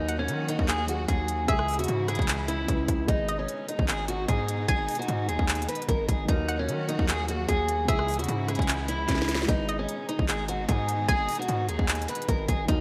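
A half-time trap beat at 150 BPM in G# minor drives this eerie, hard-hitting hip hop piece, its electronic kit up front with a hard-clipped kick, sharp snare, crisp hats, handclaps and rim clicks, a drum fill at 9.1 seconds, and a heavy, saturated 808-style bass beneath. A boxy, picked old ladder-braced acoustic guitar carries the melody up front through rich chorus, low-pass filtering and digital delay, while a hollow, nasal square-wave pluck with chorus and delay adds a bouncy second line from 0.1 to 11.8 seconds. In the background, a mellow grand piano with audible action noise and a bowed symphonic string section with expressive vibrato hold the D#m, C#m and G#m harmony, set in a lush hall reverb with bright 1980s-style digital production.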